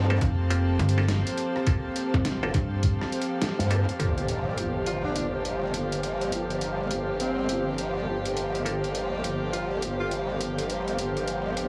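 Glitch hop at 103 BPM in G minor, funky and swaggering, with a swung 16th feel resting on a Gm9 chord: a growling, wobbling growl bass with chorus sits up front under rich, earthy chamber strings and an airy, breathy pad, both pumping to the sidechain, while a twangy muted clav plays stabs through a low-pass filter and dub echo in the background. A gritty, pitched-down boom bap drum kit with hi-hat, rim click and snare starts at 0.2 seconds, joined until 3.0 seconds by a thumpy electronic kick and a snappy, metallic slap-like FM bass, with a band accent at 3.4 seconds. An electronic impact opens the second section at 4.0 seconds, and a breathy, whispered tenor saxophone with vibrato, scooped notes and dub echo takes a jazz-style solo from 4.9 to 10.2 seconds, all within a heavily compressed radio sound with vinyl crackle and small room ambience, cut from a longer piece.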